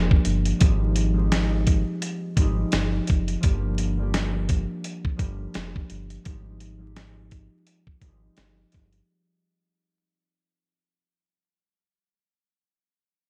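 Boom-bap hip-hop with a dark, gritty mood, moving at 85 BPM in 4/4 with a 57% swing on the sixteenths, and cut from a longer piece. A dusty, sampler-style drum kit sits up front from 0.1 seconds, its thumpy kick, fat snare and hi-hat carrying vintage 12-bit grit and compression, re-recorded in a large room. Beneath it, a round analog bass blends sawtooth, sine and triangle tones into a deep, evolving, sustained low end with a fast attack, playing until 9.0 seconds. A thumb-plucked concert harp rings softly as accompaniment, filtered at both ends of its range, and it continues alone until 11.0 seconds. The harmony shifts between Gm7 and Fm7/Ab, while a small room ambience and vinyl crackle surround the track as the whole section fades out over its length.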